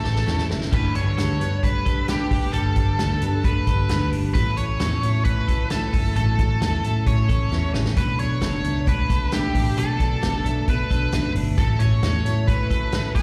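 Breezy and nostalgic, this jangly indie pop excerpt moves at 133 BPM in a straight 4/4, heard as a live gig through the venue's PA with small room ambience and recital hall reverb, cut from a longer piece. A high-gain lead guitar carries the melody with distortion, slapback echo and delay, over a bright parlour-style picked steel-string acoustic with slapback echo, bright arpeggios from a clean, compressed, twangy twelve-string electric, and a dark, round, foam-muted vintage bass. A vintage drum kit with a punchy kick and medium-tuned snare opens with a fill before the section begins at 0.7 seconds, adds another fill at 7.5 seconds, and supports chords moving from A through Gadd9, A6 and Bm7.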